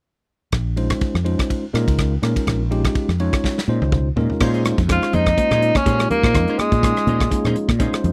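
Nocturnal and intense, this dry, close 1970s-style jazz fusion excerpt opens with a round, dark fretless bass, a punchy, up-front studio drum kit and a bell-like electric piano on a Bbm11 chord. After a drum fill ends at 4.4 seconds, compressed clean guitar stabs with ensemble chorus and soft-handed congas join in the background, and a clear tenor saxophone with light vibrato and slapback echo carries the melody from 4.9 seconds.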